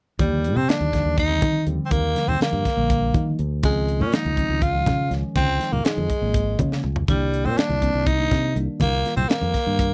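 A dry, close 1970s-style studio sound frames this short cut from a longer electric jazz fusion piece, slick and soaring at 244 BPM in a straight 7/8 in Eb major. Up front, a raspy, growling tenor saxophone carries the melody with light vibrato and a jazz soloist's edge, while a fingered electric bass sits beneath it with a dark, round, direct tone. A tight funk drum kit, mid-forward with a high-tuned snare and tight kick, drives the odd metre across hi-hat, snare, kick and toms, and low-tuned congas with a thick skin add hard-handed percussion in the background. Further back, a worn, slightly out-of-tune tine electric piano comps through overdrive and phaser, playing a fill at 6.3 seconds that the drums join with a fill of their own. The harmony moves from Ebmaj7 to Dbmaj9 and lands on Cm9 at 7.1 seconds.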